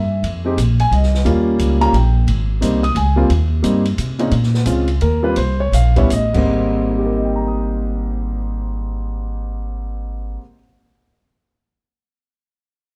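Clear, deep-bottomed concert grand piano with plate reverb carries the melody over woody pizzicato upright bass from the start of this relaxed, swinging jazz piano trio excerpt in 3/4 and Ab major at 150-176 BPM, with an open drum kit of dark cymbals, medium-tuned snare and boomy kick joining at 0.2 seconds and dropping out at 6.4 seconds, while the trio slows down from 4.3 seconds through a moderate club reverb, heard from further back in the room, and the fragment ends as a cut from a longer piece.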